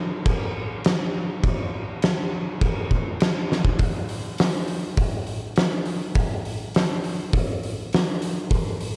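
A massive, low-tuned acoustic drum kit carries this short metal fragment on its own, entering at 0.3 seconds and playing through to 8.9 seconds. The pulse sits at 102 BPM in a straight 4/4, with kick drum, snare, hi-hat and crash cymbal all sounding up front. The kick is punchy and the snare fat, while a saturated, gritty edge gives the kit a heavy, ominous weight, set in a bright stone room. A drum fill at 3.5 seconds marks the turn into the second section just after. The production is dark and dry, with little reverb, keeping the cut from a longer piece close and menacing.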